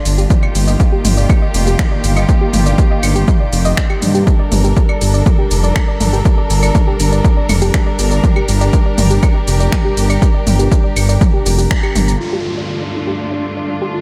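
A punchy, up-front electronic kick drives this melancholic, dramatic melodic techno excerpt, joined by a deep, rumbling detuned saw bass, an overdriven deep house kit with metallic hats, claves, snaps, shaker and toms, sustained chords from a dark, bowed chamber string section, and soft round pluck arpeggios with tape echo, with the bass, strings and pluck pumping under sidechain over Ebmaj7 and Gm7, until a band accent at 11.7 seconds gives way at 12.2 seconds to a thick, wave-folded unison lead under a filter sweep and an electronic downlifter over Dm/G in light reverb.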